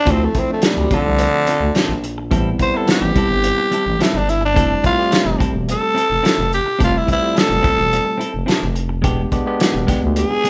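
Smoky and brooding, this straight-eighth soul blues moves at 107 BPM in 4/4, cut from a longer piece. A raspy, breathy tenor saxophone sits up front and solos the whole way through, from 0.0 to 10.5 seconds, ranging from D3 to C5 in a gritty jazz style. Beneath it, a bell-like tine electric piano supplies clean, bright accompaniment, while a compressed, picked electric guitar adds stabs from the background. A thick FM bass with a fast attack and sustained notes growls low, stopping at 10.2 seconds, and an acoustic soul drum kit with a fat snare, tight kick, hi-hat and rolled-off top sits close and mid-forward. The harmony moves from Dm7 through Am7 and Fmaj7 to an E7#9 at 9.0 seconds, all heard as a band playing live in one room with light reverb.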